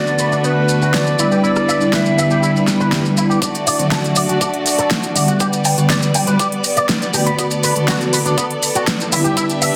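Feel-good and groovy, this nu-disco excerpt moves at 121 BPM in a straight 4/4, set in D major over chords that circle from Bm7/D and Em7/D to D and Gmaj7/D. A hollow, pure concert flute carries a short tongued melody with vibrato and tape echo, heard only until 2.7 seconds. Mellow synth brass sits up front with a round, detuned sawtooth tone, chorus, cassette-tape colour and tape echo. A clear studio violin section holds smooth sustained chords roughened by 12-bit sampler grit and sidechain pumping, while a twangy, scooped electric guitar plays a picked riff through an envelope filter, ensemble chorus and a low-pass filter. Band-limited maracas with group handclaps start almost at once, a pop drum kit with a fat snare, rim click and crisp hats joins at 0.9 seconds, and a knocking electronic kick enters very quietly at 3.4 seconds as the build-up begins. A filter sweep on analog polysynth opens the passage, another on clean electric guitar drives the build, and a small, wet digital room reverb sits under a dense, heavily limited modern master.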